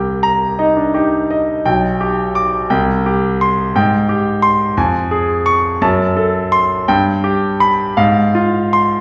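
This romantic classical character piece for solo piano carries a passionate, bittersweet mood at a slow 57 beats per minute in 6/8, its uneven beats stretched and pulled by rubato. A bright concert grand piano plays alone across the full 9 seconds, reaching from a deep bass up into a brilliant, polished treble, with a short sustain that keeps each chord distinct. The harmony moves from Cm7 through G/B and Abmaj7 to a tense F#dim, then G, before settling on Fm/Ab near 8.0 seconds. The instrument sits present and up front in tone, yet it is heard from further back in a recital hall whose wet reverb lends a lingering glow. The tuning rests slightly high at A4 = 441 Hz, and the passage is cut from a longer piece.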